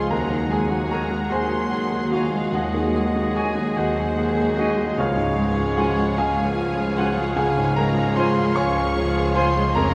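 Bathed in a wet cathedral reverb, this passionate, lush classical excerpt in Db major moves at a rubato 50 BPM in 12/8, with an intimate, up-front baby grand piano carrying the melody alongside a focused, vibrato-rich violin section, while a vintage-toned solo oboe, a distant background violin section, an airy flute and a roomy clarinet weave second lines over a smooth viola section, very quiet French horns and trombones holding sustained chords, and a bowed cello and double bass section supporting the bass as the harmony settles from Ab7/Eb onto Db at 5.0 seconds.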